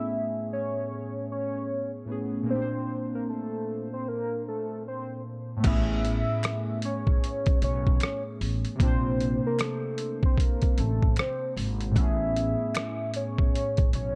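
A cosy, dreamy lo-fi hip hop fragment at 76 BPM opens with a velvety synth lead singing a smooth, sustained melody over warbling, nostalgic synth keys, both softened by chorus and a low-pass filter, with tremolo and vibrato on the lead and a phaser on the keys. The harmony drifts between Amaj9 and B-flat colourings, first Bbadd9 and later Bbmaj9, before settling back on Amaj9. At 5.6 seconds a gritty, pitched-down boom bap kit arrives up front, with a thumpy kick, hi-hat, rim click and crash cymbal in a compressed, tape-warm sound. A woody, growly pizzicato upright bass enters at the same moment. Close, dry finger snaps sit in the background from 6.4 to 13.0 seconds, and the dark production keeps reverb to a minimum for an intimate, swung 16th-note feel.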